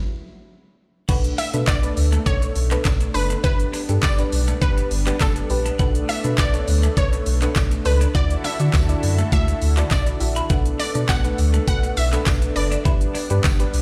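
Dance-pop in B minor at 102 BPM, energetic and confident, this excerpt opens on a brief stop before the band lands at 1.1 seconds: a deep, up-front sub bass with octave and a knocking electronic kit with crisp hats, handclaps and shaker drive under a soft, dark pluck and a thick detuned pad that both pump with the sidechain, while a twangy twelve-string electric guitar riff sits in the background, a punchy, ring-modulated unison pluck carries the tape-echoed melody from 1.4 seconds, a jingly tambourine ticks very quietly, and the chords cycle through Bm7, G and Dadd9 in a stone room played over a big sound system.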